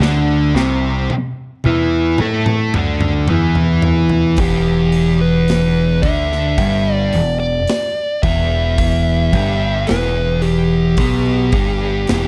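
A bright, growling overdriven bass sits up front in this brooding, ominous stoner and doom metal excerpt, joined by two thick fuzz guitars, one warm and one dark in the background, grinding out the riff over a punchy, acoustic rock kit that plays a fill through the opening D5 passage, before a dark fuzz lead guitar with delay enters at 4.4 seconds as the harmony moves to E minor, all within a light reverb and a dark, warm production.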